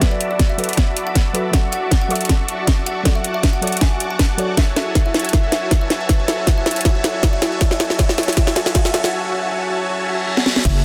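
A dense, heavily limited mix bathed in shimmering reverb carries this dreamy, emotional future bass build-up, cut from a longer piece, with a half-time, lightly swung feel. A huge, detuned supersaw riff with 12-bit grit and sidechain pumping sits over a hard-clipped electronic kick and a trap kit of sharp snare and metallic hats, while a woody, ringing kalimba carries the melody in the background and a dark, soft pluck accompanies until 4.6 seconds, when a punchy, very quiet unison pluck takes over with arpeggios. Faint risers and a reverse cymbal build tension through a long drum fill, and a thick, saturated sub bass lands up front at 10.6 seconds.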